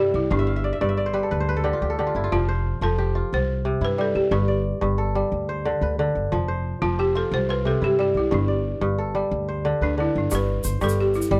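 Set in 12/8 at 120 BPM counted in dotted quarters, this hypnotic West African traditional music is cut from a longer piece and moves in G mixolydian over G, F and C chords. Crisp, ringing fingerpicked kora arpeggios sit up front and open with a fill from 0.3 to 2.3 seconds, while a smooth, buzzing balafon struck with hard rubber mallets carries the melody and a woody pizzicato upright bass anchors the low end. A grainy, bright egg shaker joins only at 10.3 seconds as a new section begins, all in a dark, warm production with little reverb.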